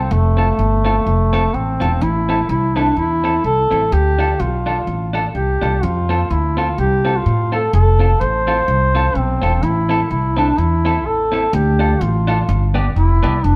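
Captured as a band playing live in one room, this ska excerpt sits in a moderate large studio reverb, with a swung, driving and mischievous feel. A solo duduk carries the melody up front in a vintage folk style, its warm tone bending through scooped notes, while a woody, up-front pizzicato upright bass on steel strings anchors the low end. Entering at 0.4 seconds, a clean, compressed electric guitar with a scooped, fingered tone fills in the accompaniment beneath them over a cycle of F, Am and Dm that turns to G near the close.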